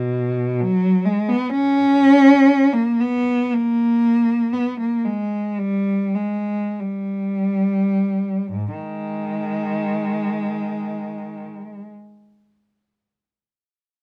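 A single bowed cello sits up front in this meditative classical fragment, its rich, focused tone carrying vibrato and a smooth top end. Played by one player in G# minor, the unaccompanied line moves freely in rubato, with the tempo drifting between 27 and 67 BPM over a 4/4 frame and slowing through the opening 8.5 seconds. The cello ranges from G#2 up to C#4, keeping to its darker, lower register and lending the music a lonely, introspective quality. A moderate studio reverb gives the instrument a modest sense of space, and the overall production leans dark and warm. Cut from a longer piece, the passage shifts into a new section at 8.5 seconds, and the cello's final phrase ends at 11.9 seconds.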